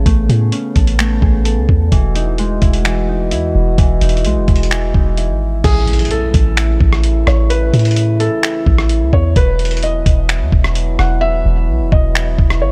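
A soft, round 808-style bass sits up front in this blissful, floating slice of atmospheric cloud-rap, its deep sine tone striking with a fast attack and then decaying under a half-time groove. A lo-fi sampler-style drum kit, pitched down and muffled, adds a thumpy kick, finger snaps, rim clicks, hi-hat and crash cymbal, with a compressed, small-room character. A dark French horn section holds tight, classical-style chords that pump with sidechain, while a mellow, thumb-plucked Celtic harp rings out filtered, delayed arpeggios until 7.8 seconds. At 5.6 seconds a felt-muted upright piano takes the melody, intimate and thin-felted with audible action noise and short sustain, also filtered and echoed, as a very quiet electronic impact passes beneath it. The harmony drifts from Amaj7 to Emaj9, then A and Emaj7sus2, inside a digital ambience, and the hi-hats drop out from 11.2 seconds before the cut.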